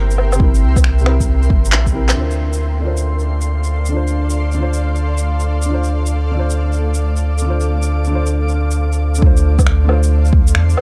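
The production is dark and warm, with little reverb, framing a wistful, melancholic future garage fragment cut from a longer piece and set on swung sixteenths. A woody, polished upright piano carries the accompaniment through a low-pass filter and analog delay, pumping against the sidechain as the harmony moves from C7 to Dm7. From 2.2 seconds, a filter sweep runs across the piano. Above it, a blurred, detuned granular cloud pad holds bright sustained chords in a high register, roughened by vintage 12-bit sampler grit and its own built-in reverb. Underneath, a round, soft dub sub bass sits up front, also breathing with the sidechain, while an overdriven kit of electronic shaker, woodblock, finger snaps and handclaps plays in a small room. A deep, overdriven electronic kick enters at 0.4 seconds and drops out at 1.9 seconds as a short fill leads into a band accent, then returns at 9.2 seconds.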